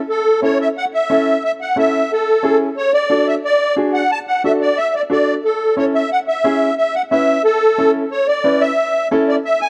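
A moderate plate reverb surrounds this joyful, danceable Latin fragment in A major at 180 BPM, where a reedy, shimmering musette accordion carries the melody up front from 0.1 seconds while a woody upright piano enters at 0.4 seconds to accompany it through a simple A, D, A progression before the piece is cut off.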